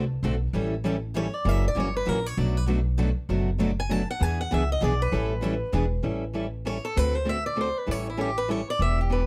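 Two picked steel-string acoustic guitars, one warm with audible finger squeak and the other bright and full-bodied, open this charming, swinging gypsy-jazz waltz in 3/4 at 196 BPM, over a woody, thumpy pizzicato upright bass set up front. At 1.2 seconds a boxy, fresh-stringed swing-style acoustic guitar takes the melody in A mixolydian, moving through dominant chords such as D7, A7 and E7. The full-bodied rhythm guitar drops out at 5.8 seconds in this short cut, and the close, detailed miking with little reverb keeps every part present and intimate.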